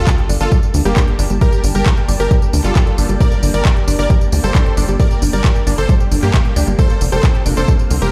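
Euphoric and soaring, this uplifting trance excerpt drives forward at 134 BPM in a straight 4/4, set in G minor and moving from Gmadd9 to Fsus4 at 6.8 seconds. An overdriven, punchy analog kick sits up front and carries the most weight, while a layered big-room kit adds handclaps, tambourine and crisp hi-hats with a tape-tinged sheen. Underneath, a tight, nasal sequencer bass of sawtooth and square waves plucks through its filter with fast-attack, decaying notes, and a very quiet sub drop marks the opening impact, ending at 1.4 seconds. A detuned supersaw stab carries the melody with a filter sweep and delay, joined by a sequenced arpeggio synth whose wave-folded, detuned tones pass through chorus, phaser, cassette-tape colouring and delay. Behind them a thick, bright unison pad with a sub octave and slow attack holds sustained chords through chorus and phaser, and the bass, stab, arpeggios and pad all pump against the kick while the sound plays through a big system in a bare room with large studio reverb.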